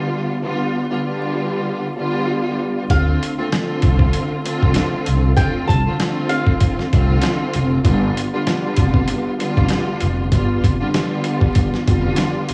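A dark, bowed string section opens this moody boom-bap hip-hop excerpt alone, lush and expressive with vibrato, a smooth top and a cassette-tape character, over the crackle of vinyl and a small room's light reverb. At 2.9 seconds a gritty, compressed sampler-style drum kit arrives up front with a thumpy kick, fat snare and hi-hat, swinging alongside a woody pizzicato upright bass on gut strings. Briefly, until 7.2 seconds, a boxy fingerpicked flamenco guitar adds a high melody with audible finger squeak and analog delay, as the harmony moves from G7 to Dm7 and back.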